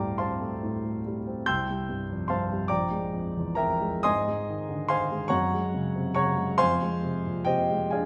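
In a slow, rubato 6/8 that drifts around 42-49 BPM counted in dotted quarters, this brief fragment of impressionist classical solo piano unfolds with a mysterious, nocturnal air. A single concert grand carries the whole piece, sitting close and up front, with a natural, warm tone and a deep bass that reaches down to Bb1 while the upper register climbs as high as G6. The harmony slides through unexpected colours, moving from Am7/D to C, then Bb7, G#, F#add9 and finally Fm6 by 6.6 seconds, giving the passage a shadowy, wandering quality. A wet recital hall reverb surrounds the instrument, letting each chord bloom and linger in the space. Lasting just over eight seconds, the moment feels like a glimpse into a larger, dreamlike work.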